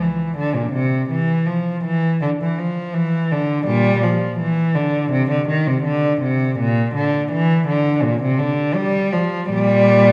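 Classical, baroque-style suite movement for unaccompanied cello, cut from a longer piece, with a dance-like, flowing mood and a rubato feel in 4/4. A single bowed cello plays alone from 0.0 to 10.1 seconds in its low register, up front with a rich tone, soft attacks, expressive vibrato and portamento. A wet recital hall reverb places the listener further back in the room.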